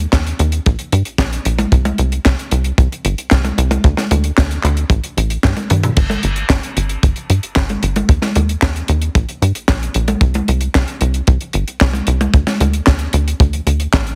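A dry, heavily compressed radio sound frames this bittersweet, nostalgic italo disco excerpt in straight 4/4, where a punchy, nasal sequencer bass with saturated sawtooth and square-wave plucks drives up front beside a tight acoustic kick and a funk kit of bright cymbals, high-tuned snare, hi-hat, handclaps, toms and crash, with a drum fill at 5.4 seconds.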